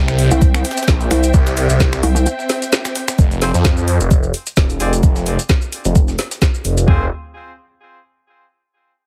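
A bright, lush string section holds sustained chords over a swirling, thick detuned saw bass as this swaggering, bouncy bass house cut opens at 130 BPM, with a 55% swing on the sixteenths. Almost at once the drums arrive: an overdriven garage kit with finger snaps, metallic hats and a woody snare, a second garage kit supplying a knocking kick and toms up front, and a gritty, pitched-up breakbeat kit of hats, shaker and snare sitting in the background alongside grainy, mellow maracas. A heavy pulsing pluck wobble bass with chorus and saturation joins the drop briefly, stopping at 2.3 seconds as a short break begins. The strings fall away at 3.1 seconds, and from 3.4 seconds a clear, punchy horn section fires tight stabs with delay while the phased saw bass runs through a filter sweep. Sidechain pumping gives the strings, horns, both basses and the breakbeat hats and percussion a breathing bounce, and the whole mix is dry and heavily compressed, like a radio broadcast.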